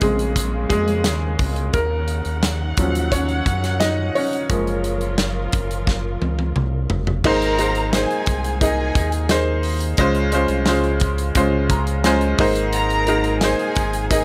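Warm and uplifting, this piano-driven pop fragment in Ab mixolydian moves at a straight 87 BPM in 4/4: a clear, woody, slightly detuned upright piano leads up front with plate reverb, while a round, deep analog bass and a tight, mid-forward acoustic drum kit hold the groove; a distant, lush string section with portamento sustains chords until 7.2 s, as a drum fill closes the first section, and a dark, bowed violin section adds a second line from 7.3 s, while the piano adds a fill at 11.4 s over chords that settle from Bbm7 toward Abadd9.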